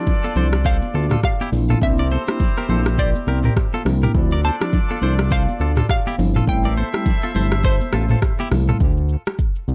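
Afrobeats fragment with a hypnotic, smooth feel, where a hollow, detuned square-wave pluck carries the melody through chorus and digital delay over a clear, vintage horn section with light vibrato, a mellow tine electric piano on chords, a twangy, direct-recorded clean guitar riff with its own delay, a fat, saturated sawtooth bass and an up-front electronic drum kit with deep kick and smooth hats, all tinted by high-tuned congas in the background, light reverb, a dark production and a faint mains hum.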